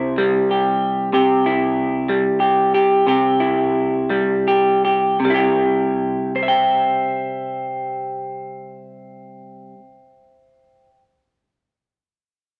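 Worn, warbling cassette tape with a drifting pitch and a moderate large-studio reverb frames this nostalgic, peaceful folk fragment in 6/8, cut from a longer piece, where a lone electric guitar through a small old amp, bright, twangy and slightly broken-up, sits up front and is picked across a C chord from C3 to G5, slowing down between 1.1 and 5.2 seconds before playing on to 11.0 seconds.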